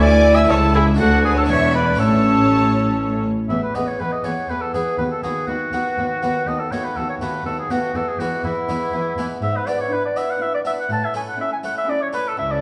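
A roomy recital-hall reverb surrounds this lively, brilliant baroque-style concerto movement, heard as a cut from a longer piece, moving in a straight 3/4 at 122 BPM. A warm oboe with light vibrato carries the solo melody up front, though its tone sits somewhat distant in the space, while a rich, smooth violin section also carries the melody high above and a second violin section adds a second line, both kept in the background. A plucked harpsichord with a brilliant, octave-strung character fills out the accompaniment alongside a lush, expressive viola section that slides with portamento. Underneath, a dark, intimate cello section holds the bass, joined at first by a clear, intense double bass section that drops out at 3.3 s. The music opens in A major, shifts to E major as the second section begins at 3.5 s, and returns to A major at 9.4 s.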